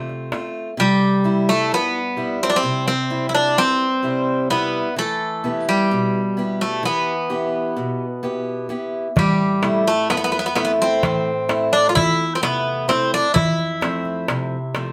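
A Greek bouzouki leads this melancholic, reflective slice of Greek folk music, entering at 0.8 seconds with a metallic, double-strung melody that sits up front in the mix, some of its strings doubled at the octave. The band plays in a straight 9/8 at 129 BPM, counted in eighths, and the harmony moves from F through C, E minor and A minor before returning to F. Beneath the melody, a picked acoustic archtop guitar provides warm accompaniment from the very start, with audible finger squeak, and it also sits up front in the mix. A small, high darbuka with a metal shell sounds briefly at the opening, then returns at 9.2 seconds with crisp, hard-handed strokes that sound close and dry. The players were recorded live together in one room with moderate studio reverb, and the recording is cut from a longer piece.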